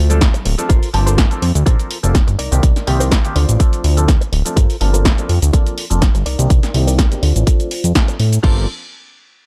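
A lightly swung groove drives this nostalgic, sensual slice of filtered disco house, anchored by an up-front, punchy electronic kick with a layered, small-room character. A tape-warm analog drum machine adds a punchy snare, hi-hat, shaker and crash cymbal, its hats, percussion and cymbals pumping against the kick, while very quiet congas and tambourine ring out with soft hands only in the opening 0.7 seconds. Underneath, a fat, detuned sawtooth bass sits loud and saturated, its plucky, evolving tone shaped by a filter sweep and sidechain pumping. A clean, direct-recorded electric guitar picks a compressed riff through phaser and low-pass filtering, and a brilliant, intimate grand piano comps with audible action noise and long sustain, colored by phaser and vintage 12-bit sampler grit. The chords cycle through Dm7, Gm11 and Cm9 in a dry, gritty mix with transformer saturation and little reverb, cut from a longer piece just as a new section arrives at 8.4 seconds.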